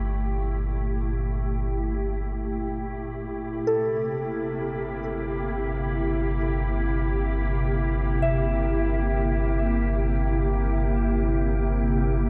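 Floating in free time, this reflective, serene ambient passage is cut from a longer piece and tuned to A4 = 442 Hz. A glassy FM pad holds sustained chords up front, its slow attack and long release enriched by ensemble chorus and built-in reverb as it fades in across the full 12.3 seconds, moving from Gmadd9 to C7/G at 3.7 seconds. Beneath it, a round sine sub bass sits deep and up front on a low G. At 3.7 seconds a soft FM synth bell enters in the background with gentle, decaying arpeggios in a pure, full-bodied tone, colored by chorus, phaser and delay. A huge ambient reverb with a 7.4-second tail surrounds the music, and the production leans dark and warm.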